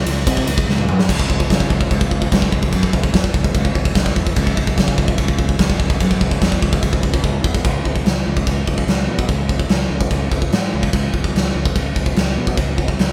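Heavy metal at 146 BPM in a straight 4/4, dark and aggressive, built on a growly, fuzzy fingered electric bass with overdrive in C# harmonic minor, spanning C#2 to C#3. A big acoustic rock kit sits up front with a punchy kick, medium-tuned snare, china, crash, ride and toms, ringing in a bright stone room, and drum fills at 0.7 and 7.2 seconds push the music into new sections. The whole cut sounds like a band playing live in one room with light reverb, and it is taken from a longer piece.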